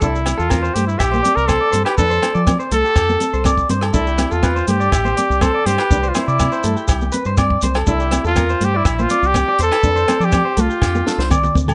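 A lightly reverberant, rounded sound with soft top end frames this carefree, sunny highlife guitar band excerpt in C major at 122 BPM, where an up-front, close-miked trumpet sings a clear jazz-style melody with light vibrato over a full-bodied, fingerpicked nylon-string guitar and twangy, scooped electric guitar arpeggios carrying slapback echo. Underneath, a dark, round fingered electric bass and a dry compact drum kit with a high-tuned snare and tight kick drive the groove alongside grainy, mellow shekere, joined by ringing agogo bells in the background from 0.3 seconds. The chords move between C7, F and C, and a drum fill closes the passage from 10.8 seconds.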